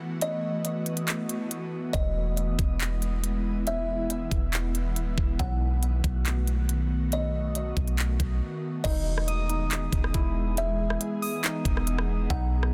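A dense, heavily limited mix with little reverb carries this dreamy, floating atmospheric cloud-rap excerpt at 139 BPM in a half-time 4/4 feel in E major, where an ethereal, detuned pad with sidechain pumping sustains chords from the start, a woody kalimba melody with digital delay and an up-front trap kit with knocking kick, crisp hats, handclaps, rim clicks and crash enter at 0.2 seconds, a deep, round 808-style bass arrives at 1.9 seconds, and soft, chorused electric-piano-like synth keys add arpeggios from 8.8 seconds as the harmony moves from B7 and E to Emaj7.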